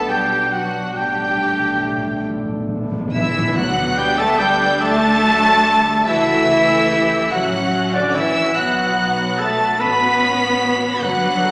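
Heard through a lush, reverberant scoring-stage sound, this section of a longer cinematic film cue feels hopeful and moving, unfolding at a slow, rubato 48 BPM in a lilting 6/8. A close, focused violin section sings the melody high with rich vibrato. A distant, expressive second violin section, a pure straight-toned flute set in the background, and a roomy, lightly vibrato oboe weave supporting lines around it. Smooth, even violas fill out the accompaniment while a French horn section holds warm, classical-style chords from a distance. Cellos with vibrato and a smooth double bass section anchor the low end. Round, soft-mallet timpani on calf heads enter from 1.0 s to 4.8 s, and the harmony settles into D major at 3.6 s before drifting through darker, suspended colours.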